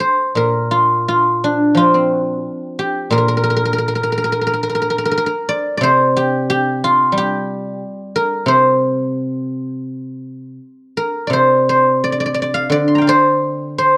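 The rhythm moves freely in rubato over a loose 4/4 pulse, giving this short passage of Chinese traditional solo plucked-string music an unhurried, meditative pace. A lone acoustic guzheng, played with fingerpicks, carries the piece from 0.0 to 14.0 seconds and ranges from Bb2 up to C6. Its tone is mellow yet silvery, and its notes ring out from a close, up-front position. The mood is longing and contemplative, as though the music is caught mid-thought in a longer piece. The dry, intimate studio sound has a 1970s character with a touch of studio reverb, and the instrument is tuned to A4 = 442 Hz.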